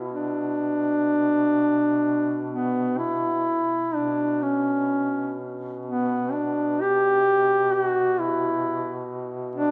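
The rhythm floats freely in rubato over a loose four-beat frame, giving this short fragment of a Caucasian folk lament a longing, mournful air. A duduk drone sits low on B2 from 0.0 s, quiet beneath the melody, its warm tone carrying vibrato, a punchy attack and scooped notes. From 0.1 s a second duduk carries the melody between B3 and G4, mellow with a smooth top, played up front in a folk style. Both reeds sound through a wet church reverb with a long 3.5 s decay, so each phrase hangs in a resonant, lofty space. The two duduks continue together until the cut at 9.7 s.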